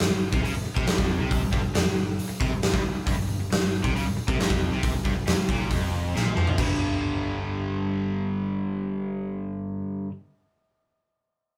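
A huge, punchy arena drum kit with bright cymbals drives this menacing hard rock excerpt in G minor at 137 BPM, pounding alongside a bright, double-tracked overdriven stack guitar riff and a growly, round picked bass further back in a moderate live-room reverb, until a drum fill at 6.1 seconds leads to the kit dropping out at 6.7 seconds as the guitar and bass settle onto a G5 power chord.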